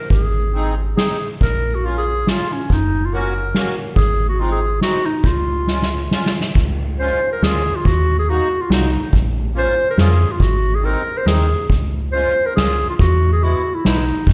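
Jolly and festive, this alpine dance-band piece in lilting triple metre sounds like a fragment lifted from a longer tune. A clear, classical-style clarinet carries the solo melody up front, backed by a metallic FM bass with a fast attack and mellow decay, and a drum kit played with soft mallets, with a boomy kick, a medium-tuned snare and dark crash and ride cymbals. A reedy, sweet accordion with light tremolo tuning joins at 0.5 seconds, sitting further back with an airy accompaniment. A drum fill at 5.7 seconds leads into a second section, where the harmony moves through minor chords before landing on an unexpected E chord at 13.0 seconds. Light stone-room reverb gives the whole band the boom of a big sound system playing in a bare hall.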